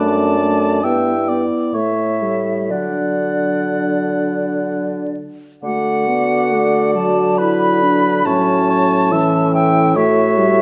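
In a rubato 3/4 that drifts between 59 and 72 BPM, this slow romantic movement for wind quintet unfolds in D major with a lyrical, tender mood, cut from a longer piece. A silver concert flute carries the melody up front, its pure metallic tone shaped by vibrato and a soft attack, while a mellow oboe with light vibrato and a smooth top sings a second line just beneath it. A dark French horn and a clarinet with a gentle attack fill in the accompaniment, and a bassoon with light vibrato anchors the bass, all five sounding together from the opening to 10.6 seconds. The harmony moves from D over F# through G and A7 back to D, and a second statement of the opening phrase begins at 5.6 seconds before settling on A near the close. A moderate recital hall reverb lends a 1.5-second bloom to the dark, warm production, and a vinyl crackle gives it an aged, intimate character.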